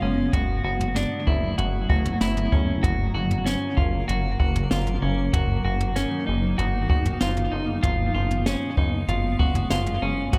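An echo-heavy, lightly reverberant mix opens this dreamy, ethereal dream pop excerpt at 96 BPM, where a cloudy, evolving granular pad holds sustained chords from D69/F# through F#maj7, Bmaj7/F# and C#7/F# over a glossy, nasal chorused synth bass pinned to F#1. Up front, a dark, clean electric guitar picks arpeggios between C#4 and F#4, colored by subtle chorus and analog delay. A brushed jazz kit with a boomy kick and high-tuned snare enters at 0.3 seconds and plays through to the end.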